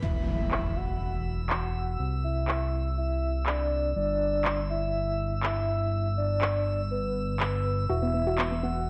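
Progressive house at 122 BPM with a hopeful, uplifting mood, cut from a longer piece, where an electronic impact opens the first 2.0 seconds over a fat, sawtooth analog bass and a full, round octave-layered synth lead carrying chorus, tremolo and dub echo, while a calm glassy texture of drifting overtones drifts high above, tape-warm layered electronic handclaps sit up front from 0.5 seconds, and a soft, gentle pluck with lush chorus and dub echo slips in at 7.9 seconds, all moving through Esus2, C and G5 in a moderate digital room.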